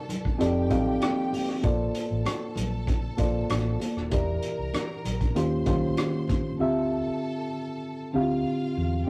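Cinematic and bittersweet, this cut from a longer lush 1970s-style soul piece in D minor moves at a straight 97 BPM in 4/4, anchored by a reedy, worn, slightly out-of-tune electric piano accompaniment up front through its built-in speakers, with a dark, round hollow-body bass, a muffled vintage kit with a punchy kick, hi-hat and rim clicks, and very quiet, bright, high-tuned congas, while a distant, lush bowed string section with vibrato floats above over chords like F13, Bbmaj9 and Eb13; drums and congas stop at 6.4 s, and the music settles on Dm11 at 6.6 s in a rough rehearsal-room sound with tube saturation.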